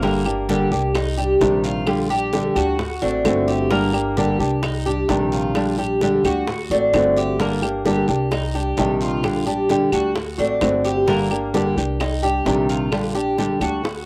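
Latin Cuban son and guajira in G minor at 130 BPM, sultry and danceable, with a dark, fingerpicked nylon-string guitar up front and a metallic, double-strung tres picking arpeggios, both carrying the grainy colour of cassette tape on this home recording. A thumpy, gut-strung upright bass plays pizzicato underneath. Tight, high-tuned bongos and compressed, woody claves (entering at 0.3 s) sit in the background, while a raspy guiro stays close and dry, all cycling through Gm, Cmadd9, Bb6 and D7 in a short section cut from a longer piece.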